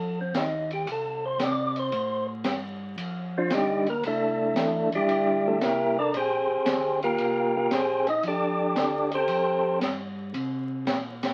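Two tonewheel organs sound together at the start: a percussive, up-front organ carrying the melody from F3 to Eb5, and a mellow, round organ with key click holding down the bass below it, both turning through a slow rotary speaker. An open jazz drum kit enters at 0.3 seconds with hi-hat, ride and a high-tuned snare, its dark cymbals sounding in a small acoustic room. This swinging, soulful soul jazz organ trio moves at 114 BPM in 4/4 with a firm swing on the eighth notes, in F major. The harmony runs through rich extended chords, F13, C13 and Bb13, before settling on F69. The melody organ's third-harmonic percussion gives it a clean bite, and it stops at 9.8 seconds while the bass and drums carry on to the end of this fragment cut from a longer piece. The whole recording sits in moderate studio ambience under the crackle of a very old 78 rpm record, giving it a dusty, vintage cast.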